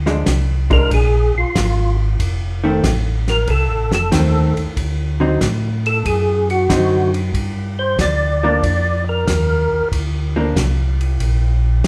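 A swung 4/4 groove at 93 BPM drives this greasy, swinging soul jazz organ trio excerpt: a round, mellow tonewheel organ bass line with key click and slow rotary speaker sits up front beside a rolled-off soul kit of fat snare, tight kick, hi-hat and ride cymbal, a clean, compressed hollow-body electric guitar comps darkly through Bb7, F7, D7b9 and Gm7, and from 0.7 s a fat, percussive tonewheel organ melody with third-harmonic percussion, chorus vibrato and slow rotary solos on top, the band playing live together in one room inside a lush large-studio reverb.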